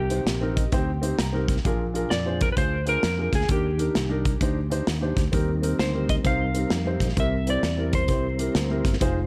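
Uptempo gospel in Eb major at 130 BPM, swung in 4/4 with an uplifting, soulful lift, this short cut from a longer piece opens with lap steel, piano and bass together, the drums joining a moment later. A clean, dark lap steel guitar carries the melody with slide and tape echo, riding over a woody upright piano that shows audible action noise and drops in a fill between 0.3 and 1.6 seconds. Fingered electric bass sits round and direct underneath, while a studio drum kit with a punchy kick, medium-tuned snare and hi-hat stays up front with a rolled-off top. At 5.3 seconds a soft, flute-like tonewheel organ slips into the background with sustained chords, colored by fast rotary speaker and chorus vibrato. The chords move from Cm7 through Bb7 and Ebmaj7 to Eb6 and C7, all in a light reverb with a studio ambience.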